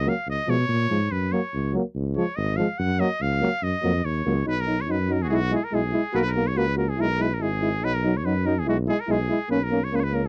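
A dry, close recording with a 1970s studio feel opens this festive, exuberant fragment of Balkan brass band folk, moving briskly at 143 BPM in a straight 2/4. A nasal, brilliant cornet with a straight mute sits up front with the melody, featured as soloist over the opening 4.5 seconds, while a punchy, smooth-topped tuba carries the bass. A mellow trombone and a close-miked euphonium fill in the accompaniment with light vibrato as the music shifts from F# major into B major at 4.5 seconds.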